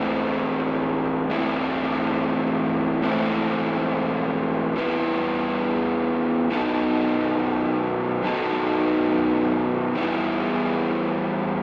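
A raw, overdriven electric garage guitar carries this smoky, heavy rock fragment alone, picked and double-tracked up front with a lo-fi character, its notes trailed by slapback echo and tape echo. In free time and E minor, it moves from A minor to E minor at 4.8 seconds, on to B7 at 6.5 seconds, and back to E minor at 10.0 seconds. It sounds like a live gig heard through the venue's PA, set in recital hall reverb and light digital ambience, in a brief passage cut from a longer piece.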